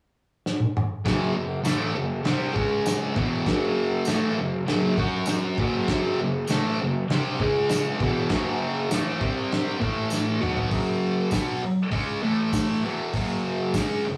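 Raw and gritty, this garage rock excerpt in F# minor moves at 99 BPM in a straight 4/4, opening with a drum fill at 0.5 s from a cloth-damped, thuddy kit with dark cymbals, a tight kick and a rolled-off top. A thick, bright, double-tracked fuzz guitar sits up front from 1.0 s, picking a distorted riff around F#m and C#5 before turning through C5, A5 and B5 to settle on F#5, with a brief move to A5, while a jingly, vintage tambourine enters at 1.6 s. The rough rehearsal-room sound carries a short booth ambience and warm saturation.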